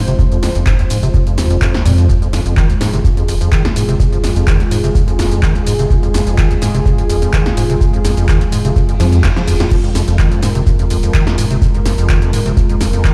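Hypnotic and raw, this acid house excerpt at 126 BPM in F minor rides a dry, deep electronic kick and a punchy, tape-warm analog drum machine of snare, handclaps, hi-hat, shaker and crash, beneath a rubbery, resonant acid bass riff with overdrive and delay, a round triangle-and-sine bass with tube saturation and sidechain pumping, and a moody, detuned sawtooth pad holding an F minor chord with chorus, while a reverse cymbal sounds in the background at 8.9 seconds ahead of a drum fill at 9.2 seconds, the mix played out on a big sound system in a bare stone room.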